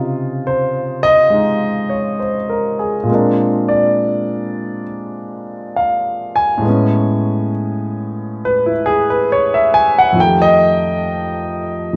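Sophisticated and relaxed, this solo jazz excerpt is a warm grand piano playing alone from 0.0 to 12.0 seconds at 68 BPM in 4/4 with a swung eighth-note feel, moving through Dbmaj9, Bb9, Amaj9 and F9 across a range from F2 to Ab5. The piano sits up front with an intimate, natural tone, long sustain and audible action noise. A wet large-studio reverb surrounds the whole, and the sound carries the worn, warbling character of old cassette tape, with drifting pitch and a dulled top end.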